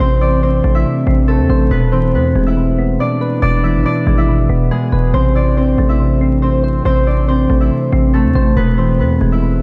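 A half-time drill groove at 140 BPM in 4/4 anchors this cold, ominous hip hop excerpt in A harmonic minor, with a punchy, heavy 808-style bass sitting up front throughout and moving between Am and E. A thumb-plucked concert harp carries the melody with a ringing, acoustic tone and tape echo, while soft, round electric-piano-like synth keys with chorus supply mellow accompaniment. The dreamy mix is soaked in lush hall reverb and dusted with vinyl crackle.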